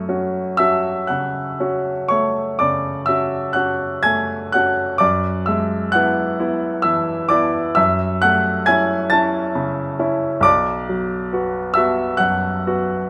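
A clear baby grand piano opens at once on an F# minor chord, playing alone in this short fragment of a slow romantic nocturne in the classical tradition. The mood is melancholic and yearning, with a rubato feel in 12/8 at roughly 38-47 BPM counted in dotted quarters. Over an F# in the bass, the harmony moves to E/F# at 5.0 seconds, then to A/F# at 7.8 seconds, before settling on B minor at 10.5 seconds. The piano spans from B1 up to A6, and its tone is polished and sits up front. A light reverb gives the room a gentle sense of space around the instrument, and the tuning is set at A4 = 441 Hz.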